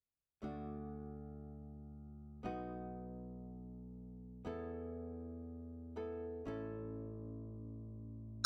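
A fingerpicked nylon-string guitar and a fingered electric bass enter together at 0.4 seconds, opening this short calypso passage taken from a longer piece. The mood is festive and carefree, carried by just these two instruments playing together in one room. The guitar supplies the accompaniment in a small, dark acoustic voice, moving between A3 and A4. Beneath it, the electric bass holds the low end with a bright, direct and growly tone. The harmony moves from D to B, then to Esus4 and on to A, with both parts sounding until 8.4 seconds inside a moderate studio reverb.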